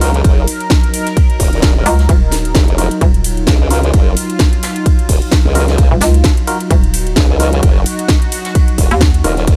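Swung sixteenths drive this gritty, swaggering bass house fragment: a punchy electronic kick lands up front from 0.2 s over an overdriven house kit with a cracking snare and metallic hats, while an acoustic brush kit sits airy and polished in the background. A saturated formant-sweep wobble bass holds down the low end from the start, joined at 1.9 s by a hollow, bouncy FM bass that knocks with a fast attack and overdrive. Above them, a dark, organ-like percussive stab trails tape echo and a bright, detuned sawtooth pad evolves through sustained chords, both pumping against the kick in a small room.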